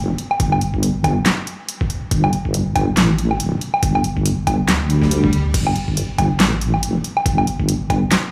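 A half-time 4/4 groove at 140 BPM with swung sixteenths drives this meditative, heavy deep dubstep excerpt, where a dark, detuned sawtooth-and-sine wobble bass with chorus sits up front beside an overdriven, layered electronic kit of huge snare, handclaps, hi-hat, woodblock and crash cymbal, with a gritty, pitched-down, thumpy kick beneath and a brief electronic swell appearing in the background at 4.9 seconds, set in light digital reverb.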